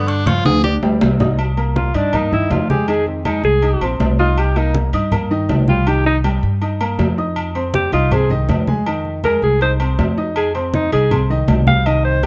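Sophisticated and driving, this Afro-Cuban jazz passage in 4/4, cut from a longer piece, opens with an edgy, forceful tenor saxophone solo lasting only until 0.7 seconds, over a drum fill, a woody pizzicato upright bass, clear short-sustained baby grand piano, bright low-tuned congas and ringing timbales and agogo bells heard from a distant, large room. At 1.8 seconds a vintage-toned alto saxophone with vibrato and subtone takes the melody up front with plate reverb, soloing over a Cm7 to Fm7 progression.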